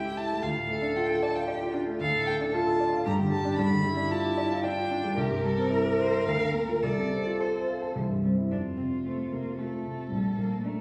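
Heard from further back in a recital hall, the trio sits in a wet reverb that lingers for about 1.5 s around the players. This quick classical-period movement for violin, cello and piano is in F major, in 3/4 at 112 BPM with a rubato feel, and its mood is restless and dramatic; it is cut from a longer piece. The bowed violin carries the melody with a soft attack, vibrato and expressive portamento, its tone sounding distant in the room. The rich cello bows a second line with the same vibrato, gentle attack and sliding expression. The grand piano sits up front with a warm, polished, present tone and short sustain as it supplies the accompaniment, while the harmony moves from D minor through G7 and C to Bb/D and F/C, then a new section opens on F at 8.5 s before turning to Gm/Bb.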